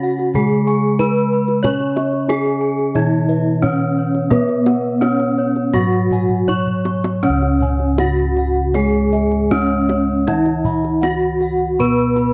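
Shimmering and ceremonial, this Javanese gamelan excerpt in C# slendro moves at 79-93 BPM in a straight 4/4, with a bright, up-front bronze metallophone carrying the melody over a mellow, padded metallophone accompaniment, a wooden-mallet metallophone and round bossed gongs spinning quiet arpeggios, and low bossed gongs holding the bass, while a tight, close and dry kendang, entering at 0.2 s, plays a drum fill from 6.3 s that leads into a new section at 7.2 s, all set in a dark production with light small-room reverb.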